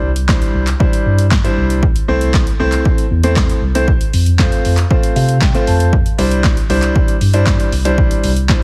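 A clear grand piano and a mellow tine electric piano holding down the bass open this euphoric, summery dance-pop excerpt together, both pumping with sidechain compression as the harmony moves from Cadd9 through Am/C and F back to Cadd9. A punchy analog drum machine joins at 0.2 seconds with kick, snare, handclaps and hi-hat, its tape-warm hits sitting up front with a short room on the snare, clap and hats, while the piano adds a fill between 4.9 and 5.9 seconds. The mix is dry and heavily compressed, with a radio sound.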